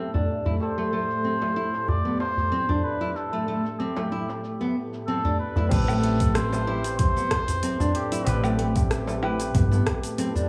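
A barky, clean tine electric piano, a smooth detuned sawtooth pad with chorus, fingerpicked nylon-string guitar arpeggios and a round, woody fretless bass open together on an A minor seventh chord in this earthy, mystical organic downtempo piece at 94 BPM, with a lightly swung 16th-note feel. The electric piano carries a filter sweep, dub echo and sidechain pumping, while the guitar's full-bodied classical tone, with audible finger squeak, is softened by a low-pass filter and analog delay. An afro-pop kit of cabasa, metallic hats, rim click, woodblock and crash, all filtered and echoed, joins a crisp, deep metal-shell darbuka played with soft hands. At 0.6 seconds a veiled, cup-muted trumpet takes the solo melody up front, trailed by analog delay, and carries it until 8.5 seconds. A deep, tape-tinged electronic kick arrives at 5.7 seconds to anchor the second section. A moderate plate reverb and small-room ambience give the echo-heavy mix a dreamy, spacious sheen.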